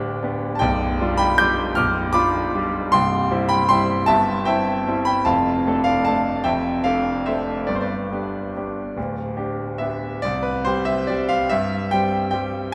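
A playful, sparkling classical piano waltz in C major, cut from a longer piece, moving in a rubato 3/4 between 135 and 162 BPM. A bright concert grand plays solo throughout, up front and brilliant, with deep bass reaching down to B0 and a range extending up to G6. A long, wet cathedral reverb surrounds the natural piano tone as the harmony moves from G and G7/B through C, Dm/F and back to G, before a new section opens on C at 10.2 seconds.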